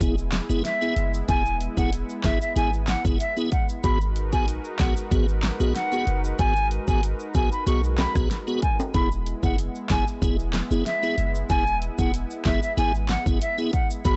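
A distant, pure-toned silver concert flute with vibrato and delay enters at 0.6 s over a tough, sultry 94 BPM dancehall groove in straight 4/4, where a punchy, up-front electronic pop drum kit with handclaps, rim click and fat snare and a deep, boomy clean 808-style bass anchor a piping tonewheel organ with key click and slow rotary speaker, a smooth, detuned analog pad pumping under sidechain, and close, ringing egg shaker and timbales, all moving from E to G#m7 and back in a dry, blown-out, overdriven recording with a dark top end.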